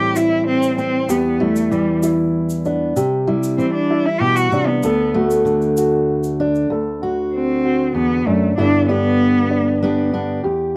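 A dry, close 1970s-style studio sound with light reverb frames this hopeful acoustic folk fragment in 3/4: a rich, bowed cello with vibrato and portamento carries an expressive solo melody through the first 6.7 seconds, over full-bodied fingerpicked steel-string guitar, dark, woody upright piano arpeggios with a slapback echo, and a grainy egg shaker that stops at 6.6 seconds.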